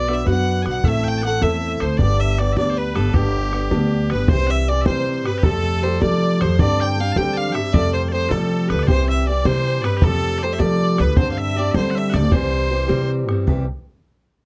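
Close, detailed microphones and little reverb give this cheerful, bright Celtic jig at 104 BPM in 6/8 an intimate sound, moving from G major to C major at 4.3 s in a short cut from a longer piece. A clear, focused fiddle carries the melody with light vibrato, while loud, piercing bagpipes hold a continuous second line, all over a fingerpicked archtop guitar whose boxy tone carries a finger squeak. A woody, thumpy pizzicato upright bass sits up front, and a damped, tight bodhran plays in the background from 0.1 s.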